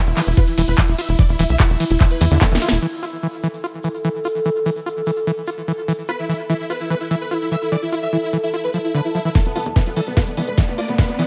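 Intense and driving, this 147 BPM psychedelic trance cut opens on a drop where a knocking, up-front electronic kick and a drum and bass kit with cracking snare, metallic hats, handclaps and ride drive a tight, nasal sequencer bass, while a squelchy, resonant overdriven acid bass riff with delay runs throughout, a huge detuned supersaw melody with phaser and 12-bit grit pumps over a wave-folded drone of moving overtones, a grainy tube shaker keeps going into the breakdown at 2.8 seconds, and the drums return at 9.4 seconds and the bass at 9.5 seconds for a build-up crowned by a background riser at 9.9 seconds.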